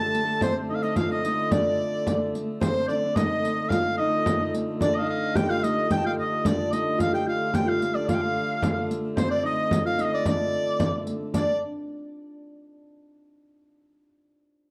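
A dry, close 1970s-style studio recording with small room ambience carries this driving, ancient medieval dance in D phrygian at 110 BPM in 2/4, cut from a longer piece, where a clear, roomy shawm with vibrato and slapback echo leads the melody up front over an airy, chiffy tenor recorder and a ringing, fingerpicked Celtic harp that holds on alone until 12.4 seconds, all resting on a dark, nasal hurdy-gurdy drone, with a riq's bright, band-limited jingles entering at 0.1 seconds and a warm frame drum joining at 0.4 seconds.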